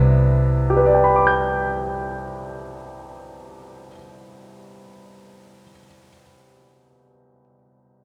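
Late-night and tender, this short jazz excerpt drifts at a slow 35 BPM with a swung feel in C major, as a clear, polished baby grand piano carries the accompaniment up front over a Cmaj7 with a touch of slapback echo, while a woody, thumpy pizzicato upright bass on gut strings sounds only until 3.9 seconds, all heard live through a club's PA in a lush hall reverb.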